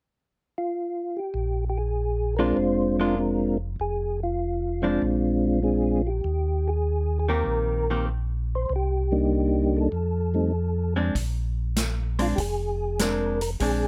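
Soul jazz organ trio at 98 BPM in a swinging, soulful Bb mixolydian groove, where a soft, flute-like tonewheel organ carries the melody with percussive attack and chorus vibrato through a slow rotary speaker from 0.6 seconds, a round, dark tonewheel organ with key click soon adds the bass line, a clean, compressed hollow-body electric guitar picks its accompaniment from 2.4 seconds, and a big-band drum kit with punchy kick, snare and hi-hat arrives only at 11.2 seconds, all captured close and dry in this short excerpt cut from a longer piece.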